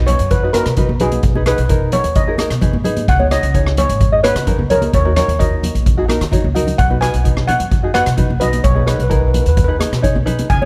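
A straight 4/4 calypso groove drives this sunny, carefree passage, cut from a longer piece. A metallic, shimmering double-seconds steel pan played with hard rubber sticks carries the melody over a light, thumb-plucked tenor ukulele and a woody pizzicato upright bass with steel strings. An up-front street-band kit with a boomy kick, hi-hat and rim click drops a short fill at 6.4 seconds, while thick-skinned, high-tuned congas played with soft hands sit damped and saturated in the background, all within a light reverb.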